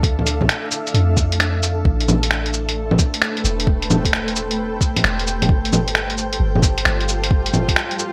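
A blurred, detuned granular cloud pad with built-in reverb, 12-bit sampler grit and sidechain pumping runs through this wistful, nocturnal future garage excerpt at 132 BPM in A minor, holding chords that move from Dmadd9 to Am9 at 1.9 s and G9sus4 at 5.5 s over a deep, round, sine-toned 808-style bass that also pumps, a soft, tape-warm electronic kick, and an up-front, muffled, pitched-down lo-fi sampler kit of bongos, cabasa, finger snaps and hi-hat with gated reverb, set in a 66% swing on 16ths beneath vinyl crackle and a bright 1980s-style digital sheen.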